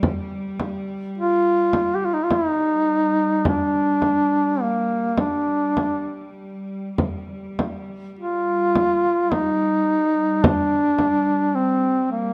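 A warm, close-miked duduk carries this solemn, mournful Caucasian folk lament, entering at 1.2 s up front with vibrato and scooped notes as it sings a solo line between Bb3 and G4. Beneath it, a rich studio cello section holds a bowed, earthy drone on G3 with light vibrato, a biting edge and a smooth top, while a deep, large frame drum played with soft hands sits up front until 11.2 s. The piece moves in a rubato 3/4 at 53 BPM in G minor, tuned to A4 = 438 Hz, with light reverb, and is cut from a longer recording.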